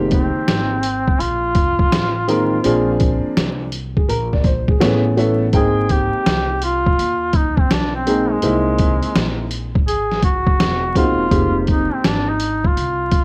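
Worn, warbling cassette tape with vinyl crackle and warbly pitch drift colours this smooth, warm jazz-hop excerpt, set in light studio reverb at 83 BPM with a swung 4/4 feel. A clear, folk-style duduk takes the solo melody up front with vibrato, over a vintage, slightly detuned upright piano accompanying through chords such as Fm11, Bb9, Abmaj9 and C7alt before dropping out at 12.3 seconds. A woody pizzicato upright bass and a gritty, compressed, pitched-down sampler-style drum kit, with a thumpy kick, medium-tuned snare and hi-hat, hold the groove to the end at 13.2 seconds.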